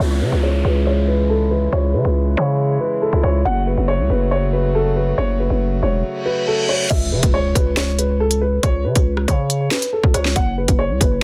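Menacing and tense, this half-time drill excerpt at 139 BPM in C# minor opens with a dark, boxy grand piano melody through a low-pass filter and digital delay, over reedy, breathing harmonium chords and a growling, buzzy 808-style bass. A downlifter, filter sweep and reverse cymbal build toward 6.9 seconds, when the harmonium stops, an impact hits, and an up-front electronic drill kit enters with a hard-clipped kick, sharp snare, crisp hats, rim clicks and crash cymbal. The excerpt sits in a digital ambience with a dense, heavily limited modern master.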